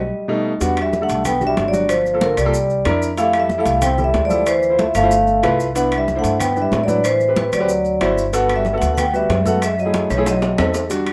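A sophisticated, driving stretch of Afro-Cuban jazz at 186 BPM in E minor opens with a brief break, where the metallic, ringing vibraphone carries the melody over a growling, raspy trombone second line, a woody pizzicato upright bass and a clear, up-front concert grand piano that enters almost at once. From 0.6 seconds high-tuned congas, ringing metal-shell timbales and grainy maracas join the groove, with distant, woody claves following at 0.8 seconds, while the harmony moves through rich jazz changes such as Em7, Gm9, G13 and Am9. A drum fill from 10.1 seconds leads toward the end of this cut in a moderate club reverb.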